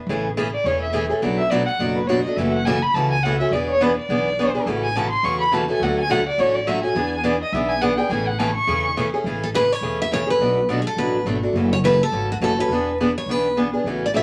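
Swinging and lively, this snippet of acoustic string swing in the jazz manouche style opens with a picked dreadnought guitar laying down bright, fresh-stringed accompaniment over a woody pizzicato upright bass. Up front, a bowed violin takes a smooth, expressive solo from 0.5 s to 8.9 s, full of vibrato and portamento, before a boxy parlour guitar picks up the melody at 9.4 s, finger squeaks and all. A moderate studio reverb and a layer of vinyl crackle give the recording an old-record patina.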